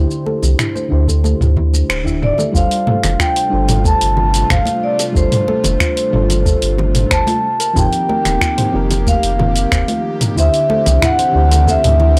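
Relaxed and smooth, this sunset chillout excerpt moves at 92 BPM in G minor, a straight 4/4 cut from a longer piece. A mellow FM electric piano with chorus and tremolo sets the dark, rounded harmony from the start, its filter sweep running through the opening 2.5 seconds, while a soft, gentle pluck traces arpeggios in the background through analog chorus and tape echo. Underneath, a deep sine sub bass sits up front with transformer saturation, joined by a tape-toned deep house kit of finger snaps, hi-hat, shaker and toms, close and dry congas and bongos, and an overdriven electronic kick that enters at 1.1 seconds. After a band accent near 2 seconds, a vibraphone played with medium mallets, motor off, carries the melody with a metallic ring and tape echo, and an airy, breathy pad with a vintage warble adds sustained chords from 2.9 seconds. The chords drift from D9sus4 to G9sus4, F9sus4 and back to D9sus4, and the sound is dry and gritty with faint mains hum and a hardware edge.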